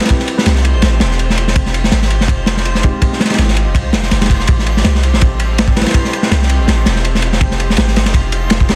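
This nostalgic, atmospheric drum and bass excerpt in A minor opens with a warbling, detuned pad holding chords in the background, sparse worn tine electric piano stabs, and a crunchy, saturated breakbeat of tight kick, medium-tuned snare and dark ride cymbal pushed up front at 164 BPM with a light swing. At 0.5 s a deep, sine-like 808-style bass enters with long decaying notes, and a reversed, granular, dreamy texture begins swelling in the background from 0.6 s. The harmony moves between Am9 and Fm9, with the piano's dub echo and the lo-fi 12-bit grit set against vinyl crackle in a dense, heavily limited mix.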